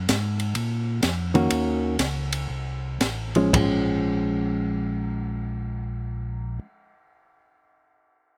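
Smoky and soulful, this short cut from a longer soul jazz organ trio piece in Bb minor swings at 111-130 BPM in 4/4, easing its pace over the first 3.5 seconds as it moves through Bbm, Ebm7 and F toward Bbm7, with a mellow, round tonewheel organ carrying the bass line through a slow rotary speaker with audible key click, an acoustic jazz kit of dusky cymbals, high-tuned snare and boomy kick playing until 3.7 seconds, and a clean, compressed hollow-body electric guitar entering at 1.3 seconds with dark, fingered accompaniment, all set close and dry.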